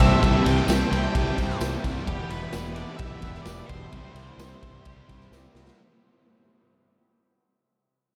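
A straight 4/4 pulse at 129 BPM drives this short, blissful and hazy fragment of shoegaze-tinged dream pop in C major, cut from a longer piece and fading out across its whole 5.8 seconds as the chords move from C6 to Em7 to Cmaj7. The raw garage drum kit sits up front with a boomy kick, a medium-tuned snare and ride cymbal, its saturated, gritty sound pumping in a bright stone room, and it closes on a drum fill at 5.3 seconds. Beneath it, a fingered electric bass with round, punchy fuzz and overdrive anchors the low end, while a thick fuzz guitar with distortion and subtle chorus churns out a riff in the background, joined very quietly by riffs from a dark, compressed overdriven guitar and a lo-fi, double-tracked garage guitar. A twangy, clean electric guitar picks faint arpeggios, and a reedy, breathing pedal harmonium holds mellow sustained chords close and dry in the background. Over the top, a dark octave-fuzz lead guitar carries the melody through distortion and tape echo until 5.3 seconds, a jingly tambourine joins from 0.7 seconds, and a cathedral reverb soaks the mix in a dreamy wash.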